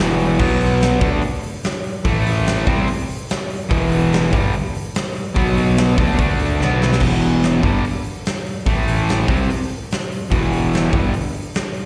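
Heard through a live venue's PA with small-room ambience and recital-hall reverb, this driving, raunchy blues rock power trio cut with a southern rock edge pairs a bright, double-tracked, compressed distorted guitar riff with slapback echo cycling through E5, B5, A5 and D5 power chords, a dark, round fuzz bass, and a punchy, natural big-room drum kit with sparkling cymbals, whose fill at 6.6 s kicks the riff back around to the top.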